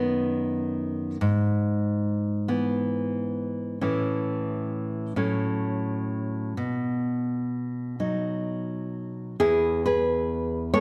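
A fingerpicked nylon-string guitar sits up front in a moderate recital-hall reverb, its fresh strings giving a warm classical tone that spans E2 to C#5. This sunny, nostalgic romantic piece for solo guitar moves in a slow, rubato 6/8 at roughly 42-47 BPM in dotted quarters, centred in E major. It drifts through B, A, F#m and B before arriving on E at 9.4 s, where a new section begins just as this brief passage from a longer work ends at 10.8 s.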